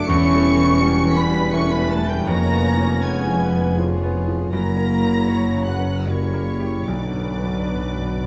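Soaked in the long, wet reverb of a scoring stage, this tragic, brooding fragment of a romantic movement for piano and orchestra moves in a rubato 3/4 at around 72-84 BPM through shadowy harmony that settles onto B minor. A clear grand piano with short sustain carries the melody alongside close, lush con sordino violins, while a present clarinet, distant veiled chamber violins and an airy flute ensemble add second lines. Beneath them a mellow bassoon and background violas, a tight, dark French horn section, very quiet muted cellos, background double basses and a very quiet, soft-attacked tuba hold the lower register, until soft-malleted, round timpani enter for a brief fill at 6.9 seconds.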